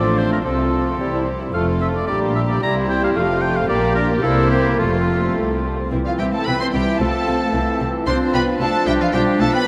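A quick, graceful classical-period movement for symphony orchestra moves at 111 BPM in 2/4 with a lively yet rubato feel, starting in F major and turning to C major at 5.9 s. A rich violin section carries the melody with light vibrato and a soft, sul tasto touch. Around it, a clear, close-miked oboe, a very quiet bright clarinet, a darker, very quiet second violin section and an airy, hollow flute group in the background weave second lines. A mellow bassoon and a very quiet viola section with fuller vibrato supply accompaniment, while a dark, smooth-topped French horn section holds sustained chords in the background. Cellos and a pure, floating double bass section anchor the bass, all of it bathed in a wet cathedral reverb that places the orchestra in a vast, echoing space, and the fragment is cut from a longer piece.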